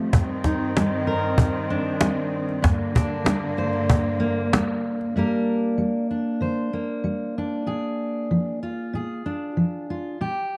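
Moderate spring reverb and small-room ambience frame this melancholic, wistful acoustic folk excerpt in G minor at 95 BPM, where an up-front, full-bodied fingerpicked steel-string guitar with old strings plays accompaniment beside an intimate, soft-attack bowed string section holding sul tasto chords with vibrato and a close, dry, woody cajon with faint snares until 5.1 s, after which the guitar carries on alone to 10.6 s.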